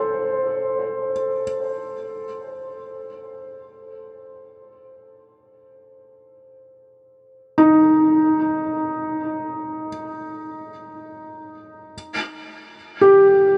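Floating in free time with an unmetered feel, this serene and weightless ambient fragment, cut from a longer piece, sits in Eb lydian and is tuned slightly sharp to A4 = 441 Hz. A felt-muted upright piano plays alone for the full 13.6 seconds, staying within a narrow span from Eb4 to C5. Its tone is soft, mellow and intimate, with the thin felt giving it a vintage character; action noise is audible, and the piano sits close and up front. The harmony rests on an Eb5 chord from the start, then gives way to an unharmonised stretch at 11.9 seconds. A diffuse ambient delay trails the piano into a vast, wet reverb with a 7.8-second decay. The whole recording carries a cassette-tape quality, its top end rolled off above 10.7 kHz.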